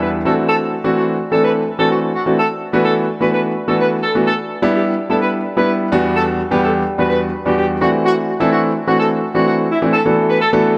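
A distant horn section with light vibrato and analog delay carries the melody over a clear, up-front baby grand piano from the start of this confident, bittersweet pop build-up at 127 BPM. Chords such as D7/E, Em7 and Gmaj7/E move beneath it, and a long plate reverb soaks the dreamy mix until the horns stop at 10.5 seconds and the piano at 10.8.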